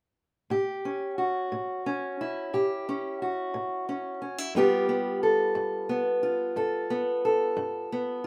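A boxy, up-front parlour steel-string acoustic guitar, fingerpicked under light reverb, carries the melody from G2 to A4 in this swaggering, soulful blues excerpt at 60 BPM in 12/8, moving from A7 to G7 at 4.5 seconds before it is cut off at 8.3 seconds.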